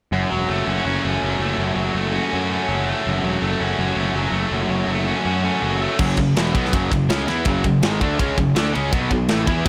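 A bright, overdriven electric guitar leads this aggressive, epic heavy metal excerpt in F# minor at 163 BPM. A second picked, distorted guitar plays its own riff tucked in the background, and a growly, fuzz-laden electric bass sits up front, with little reverb. At 6.0 seconds a tight acoustic drum kit enters up front with kick, medium-tuned snare, crash and ride, its top rolled off, joined by a very quiet, double-tracked and compressed fuzz guitar riff, before the harmony shifts from F#m to B5 at 8.9 seconds.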